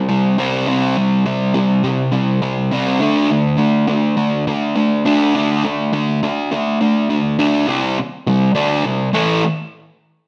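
A distorted, fuzz-laden electric guitar carries this menacing, gritty rock fragment alone, its dark, picked tone double-tracked, compressed and pushed up front. The piece moves at 103 BPM in a straight 4/4, with the guitar spanning A2 to D4 as it works through power chords on C5 and then D5. At 7.7 seconds a second section begins and the harmony returns to C5, and the guitar stops at 9.4 seconds, before the fragment closes at 10.3 seconds. A wet stone room reverb with a one-second decay surrounds the playing, giving the heavy tone a hard, echoing space. Cut from a longer piece, it feels like a brooding riff caught mid-stride.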